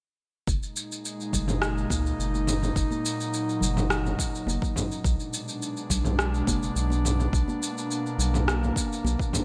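An airy, breathy pad with chorus opens at 0.5 s alongside a round, dark analog bass, a deep overdriven electronic kick and an up-front, tape-warm deep house kit of rim click, shaker and toms, with ringing congas joining in the background at 1.3 s, in this blissful, relaxed 105 BPM sunset chillout passage in F# major that moves from F#6/9 to Bm6 at 5.0 s under moderate plate reverb and bright 1980s-style digital production.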